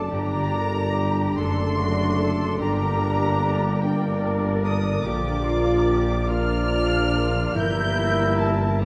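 Melancholic and elegiac, this slow romantic orchestral movement in G minor sways in 6/8 at 48 BPM with rubato, its melody sung high by a con sordino violin section with veiled vibrato. A second, background violin section, a clear clarinet, an oboe and a hollow, pure small flute group add quiet second lines, while a close, muted viola section accompanies, background trombones and distant French horns hold sustained chords, a ringing concert harp spreads arpeggios, a mellow trumpet adds stabs, and a tuba, a far-off cello section and a double bass section carry the bass. The harmony moves from Gm through D7/F# and Bb to Edim/G, set in a 1.9-second scoring stage reverb with a dark, warm production.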